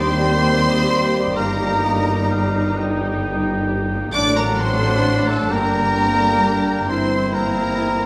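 A slow, rubato 6/8 at 44 dotted-quarter beats per minute sets a lyrical, tender mood for this short classical passage in Eb major, tuned slightly low at A4 = 437 Hz, drifting from Eb through Eb/G and D7/A to Gm and C7/G. A lush studio violin section carries the melody between A5 and D6 with expressive vibrato. Alongside it, second lines come from a richer, smooth second violin section, an airy silver flute, a distant, roomy oboe and a clear clarinet. The flute and clarinet sit very quiet. Bassoon and a lush viola section fill out the accompaniment, while mellow French horns and a tight trombone section hold sustained chords, a trumpet adds stabs from a distance, and a concert harp rings with fingerpicked arpeggios. The bass is anchored by cellos with soft attacks and portamento, a bowed double bass section and a very quiet tuba, all bathed in a wet recital-hall reverb across the full 8.1 seconds.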